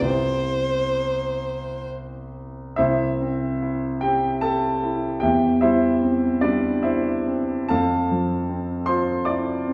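Romantic classical duo for violin and grand piano in a lyrical, warm mood, moving in a rubato triple metre, heard as an extract from a longer piece. A close, bowed solo violin sings the melody with vibrato and portamento for only the first 1.9 seconds, while the natural-sounding grand piano carries the accompaniment through to 9.7 seconds with long sustain, ranging from deep bass to bright upper notes and moving from C through C/E to Fmaj7. A reverberant recital hall and a dark, warm production give the pair a rounded, intimate glow.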